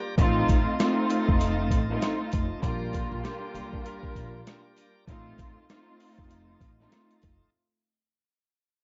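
Swung sixteenths in 4/4 drive this confident, soulful boom-bap hip-hop excerpt, where a gritty, pitched-down sampler kit with a thumpy kick and rim clicks sits under a woody pizzicato upright bass and dark, veiled muted strings playing bowed, lush accompaniment. A bright, lightly overdriven tonewheel organ holds shouting chords through a slow rotary speaker, very quiet jingly sleigh bells sparkle faintly, and a vintage horn section adds tight stabs with digital delay from 2.9 to 4.4 seconds. The whole fragment fades out over a worn, warbling cassette sound with light reverb and a dulled top end, cycling through F7 and Bb6 chords.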